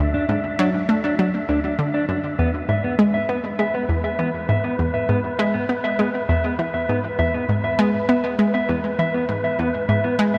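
A bright, detuned analog pluck riff drenched in chorus and tape echo drives this expansive, mysterious stretch of ambient sequencer-driven space music at 100 BPM, joined from 0.1 seconds by clean, fingered arpeggios on a dark electric guitar carrying a filter sweep, tape echo and shimmer reverb, over a breathy, wind-like tuned noise texture, all within a huge reverberant space as the chords move from D to E at 2.4 seconds.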